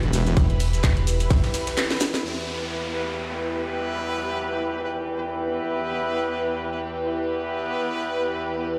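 Bass house at 128 BPM in E minor with a swung 16th feel, this aggressive, swaggering excerpt opens on a drop where a tight, up-front electronic kick and overdriven metallic FM bass hit from 0.4 to 1.4 s over a cracking garage kit, background brushed kit and grainy maracas, with a drum fill and band accent closing the first 2.2 s. Afterward the beat falls away, leaving sidechain-pumped bright chamber strings under a filter sweep, an airy chorused pad with a breathy noise layer, an electronic downlifter and punchy horn stabs with vibrato and delay from 2.9 s. The mix sits in plate reverb and stony room ambience, as if played through a big sound system in a bare room.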